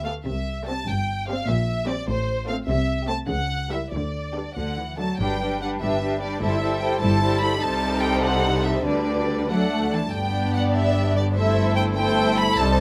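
Lively and cheerful, this excerpt from a quick classical-period movement for string orchestra moves in 6/8 at 98 BPM in G major, with a rubato feel that lets the phrases breathe. A focused, up-front violin section carries the melody high above, while a second violin section adds a lush, soft-attacked line with a smooth top. Beneath them, a distant, even viola section fills in the accompaniment, and cello and double bass sections share the bass with a smooth, rich depth, all parts bowed with vibrato. The opening passage wanders through colorful harmony, including a C#dim7, before settling on G at 5.2 seconds, where a second section begins and moves from G through Am7/G, Am7b5/C, G/D and D back to G and Am7/G. Close, detailed microphones and a light reverb give the ensemble clarity and a sense of intimate space.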